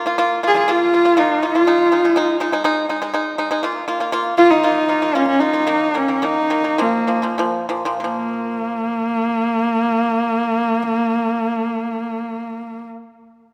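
A husky, nasal horsehead fiddle carries the melody from 0.5 seconds, its single bowed voice sitting up front with vibrato and sliding portamento on the horsehair strings. This short piece of Mongolian folk music, cut from a longer work, feels solemn and vast, moving in a straight 4/4 at a tempo between 91 and 122 BPM, and it is tuned slightly below standard pitch, with A4 at 436 Hz. Beneath the fiddle, an acoustic pipa played with fingerpicks lays down percussive, dry arpeggios in the lower register, also placed close to the listener. The pace slows from 3.6 seconds, and a new passage begins at 8.0 seconds, over a harmony that moves among Bb5, Ab5 and Eb5. A moderate concert hall reverb with a long tail gives the focused fiddle tone and the plucked accompaniment a spacious setting.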